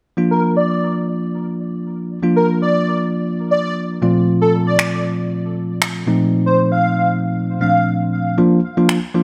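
A bell-like, bright tine electric piano carries this summery, upbeat dance-pop fragment, with an airy, detuned lead singing the melody through chorus and delay above it, while dry, overdriven electronic finger snaps enter at 4.8 seconds and drop out at 6.3 seconds, all set in a light reverb.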